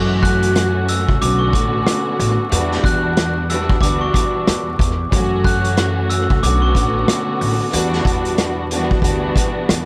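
Gritty and dark, this boom-bap hip-hop excerpt rolls at 92 BPM with a swung 16th-note feel, its vintage drum kit punchy and up front with a rolled-off top, a pumping small-room sound and a touch of analog delay, while a woody pizzicato upright bass anchors the low end. A lush, bowed string section, sul tasto with vibrato and treated with cassette tape, filtering and analog delay, carries chords moving through F#m7, Bm9 and Em9. From 0.2 s to 7.7 s a bright, sparkling glockenspiel struck with brass mallets rings out a high bell-like melody, all set in an echo-heavy mix with light studio reverb and vinyl crackle.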